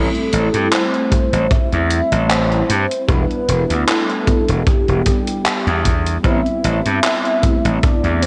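Soaked in cassette-tape haze and light reverb, this woozy vaporwave fragment drifts over a lightly swung 4/4 pulse, with a velvety, dark synth lead carrying the melody through chorus, tremolo and tape echo. Beneath it, a dreamy FM electric piano with a soft pad layer shimmers through phaser, ensemble chorus and analog delay, while a gritty, overdriven slap bass sits punchy and up front. A gated 80s drum machine adds handclaps and hi-hat with 12-bit sampler grit from 0.1 s, and a rolled-off acoustic kick drum joins at 1.1 s, as the chords move from Am7 to Em7 and back.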